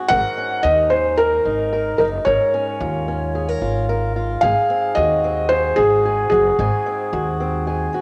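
In a straight 4/4 at 111 BPM, this hopeful Ab mixolydian folktronica fragment sets a soft, felt-muted upright piano melody up front with audible action noise, cassette tape colour and analog delay over boxy fingerpicked swing-style acoustic guitar arpeggios, also tape-tinged, and a woody, thumpy pizzicato upright bass on gut strings, all bathed in a lush hall reverb through a homely cassette recording as the chords move from Ebm7/Ab to Bbm7/Ab and settle on Ab7 at 4.4 seconds.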